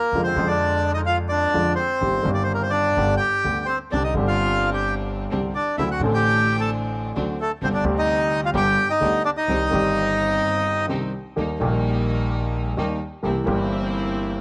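Tango with a passionate, tense, rubato feel, where a reedy bandoneon carries the melody until 10.9 s over an up-front, worn concert grand piano with deep bass and short sustain, a woody pizzicato upright bass on gut strings, and earthy bowed chamber strings that enter at 3.9 s with close stabs, all set in studio reverb, with a break before the music shifts to a major key at 11.4 s in this cut from a longer piece.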